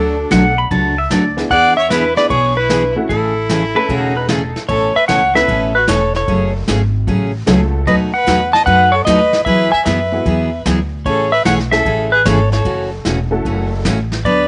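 Country western swing at 151 BPM in A major, down-home and swinging, this cut from a longer piece is led by a dark, clean lap steel guitar sliding through the melody with volume swells. A boxy, lightly vibratoed fiddle carries a second line, and a pedal steel guitar played with fingerpicks adds its own swelling slide line from 0.3 to 4.6 seconds. Beneath them, a bright dreadnought acoustic guitar with audible finger squeak, a detuned, jangly honky-tonk upright piano that drops out at 13.8 seconds, a woody, thumpy pizzicato upright bass and a vintage brush kit with a punchy kick move through chords such as Amaj7, F#madd9 and B7 in light studio reverb.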